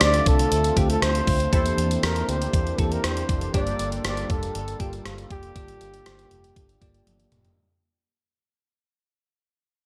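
1980s-style pop fragment, nostalgic yet urgent, where an intimate, breathy flugelhorn carries the melody up front with slapback echo and light vibrato over a bell-like tine electric piano, a smooth chorused analog pad, very quiet detuned sawtooth polysynth stabs, a round foam-muted fingered bass and a thumpy gated digital drum machine, the mix bathed in a lush hall reverb for a big arena sound as the Dm7, C7 and Gm7 changes fade out and a drum fill arrives at 7.1 s.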